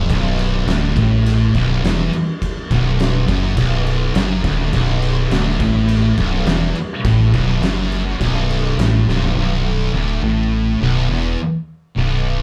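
The sound is of a band playing live together in one room, with a light reverb around it. This is an ominous, sludgy stretch of stoner and doom metal, cut from a longer piece, in B minor at 104 BPM in a straight 4/4, resting on a B minor chord. Three picked, distorted fuzz guitars play the riff low in their range: one warm, one dark and set in the background, and one bright and double-tracked. Up front beneath them, a rubbery, hollow square-wave synth bass with tube saturation has a resonant filter pluck, bouncy yet sustained. An oversized, low-tuned acoustic kit sounds gritty and rolled-off in a stone room, with a punchy kick, fat snare, toms and dusky crash cymbals. After a fill at 9.1 seconds the drums stop at 9.4, and the guitars and bass carry the final section alone until 12.4 seconds.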